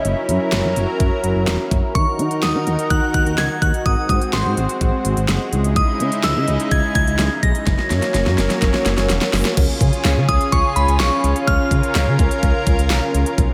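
A cool, melancholic synth-pop excerpt at 126 BPM opens with a lush, detuned unison pad holding bright sustained chords over a dark, gliding sawtooth bass and an up-front electronic pop kit of knocking kick, fat snare, crisp hats, handclaps and crash. At 1.9 seconds a glassy FM bell melody enters high above, its crystalline, decaying tones carried by chorus and tape echo, as the harmony moves from F#7 through D#m, G#7 and C#madd9. A drum fill runs from 7.7 seconds into a resolution on C#, all bathed in a dreamy plate reverb.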